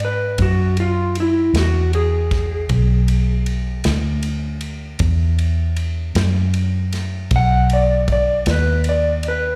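A slow 12/8 blues at 52 BPM, with a soulful, swaggering mood and a punchy-kick drum kit playing kick, dark ride cymbal and snare from a small room, alongside a round, foam-muted electric bass sitting up front. An electric slide guitar, slightly broken-up and touched with slapback echo, takes a solo across the whole 9.6 seconds, moving over an E9 chord before landing on B at 7.3 seconds. The passage sounds like a live club gig heard through the venue's PA, and it is cut from a longer piece.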